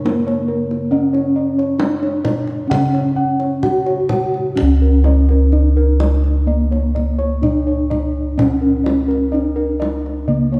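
Heard from further back on a wet, reverberant scoring stage, this serene, shimmering Javanese gamelan excerpt sets a mellow bronze metallophone melody, ringing with the beating of its paired tuning, over close, full, dry arpeggios on bossed gongs, a bright, airy bossed-gong bass line and a tight, band-limited kendang that enters at 0.1 seconds.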